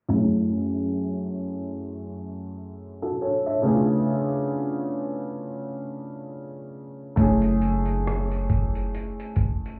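Swung 16ths at 68 BPM in 4/4 carry this melancholic, reflective lo-fi hip hop piece in F# minor, where a worn, slightly detuned upright piano with cassette tape colour and a filter sweep plays F#m9 and C#7b9b13 chords alone until 7.2 seconds, when a pizzicato upright bass with dark gut-string tone joins until 8.9 seconds alongside a gritty, compressed sampler-style drum kit of thumpy kick, hi-hat and rim click, the whole recording sounding muffled as if heard through a wall with light small-room reverb.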